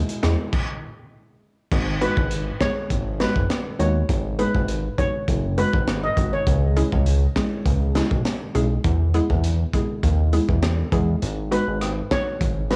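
A crunchy breakbeat kit of tight kick, high-tuned snare, rim clicks, hi-hat and dark crash drives this hypnotic, tough dancehall excerpt at 101 BPM in G# minor, sitting up front in a dry, gritty small-room sound beside a fat, nasal, detuned analog bass. A very quiet sawtooth pad opens on an E chord and drops out at 0.5 s into a brief stop, while a hollow, bouncy square-wave pluck with chorus carries the accompaniment through G#m7, C#m and E. A metallic, shimmering steel pan with analog delay plays the melody from 2.0 s, then returns after a short break at 11.5 s.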